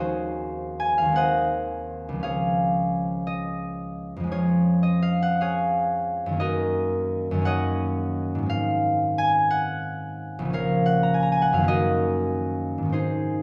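Graceful and peaceful, this classical solo harp piece moves in a relaxed, rubato 6/8, with the dotted-quarter pulse drifting between 47 and 60 BPM in D-flat major. A single concert harp carries everything from 0.0 to 13.4 seconds, its fingerpicked strings ringing across a range from Bb1 up to Bb5. The instrument sits up front with an acoustic, warm tone. The harmony opens on Ab7 over Eb, settles onto Db at 2.2 seconds, then passes through Db/F, Ebm7/Gb, Ab and Bbm before returning to Ebm7/Gb near the close. A moderate scoring-stage reverb gives the notes a gentle halo, and the passage is cut from a longer piece.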